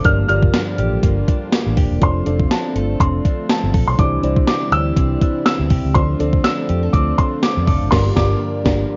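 Light reverb and a cassette-tape character give this short cut from a longer piece a soft, dulled top end. It is nostalgic, dramatic 1980s-style pop at 122 BPM in 4/4, with a gentle 16th-note swing. Up front, a gated 80s digital drum machine drives it with a thumpy kick, a gated-reverb snare, hi-hat, tambourine and crash cymbal. Beneath it, a round, punchy muted fingered electric bass anchors a progression moving from Gm7 through F6, Cadd9 and Dm7. A dreamy, warbling FM electric piano with a soft pad layer and chorus carries the accompaniment, while a swirling, evolving phased analog pad and a compressed, clean direct-recorded guitar riff sit in the background. A natural-sounding baby grand piano plays the high melody, and the band hits an accent on the return to Gm7 at 7.9 seconds.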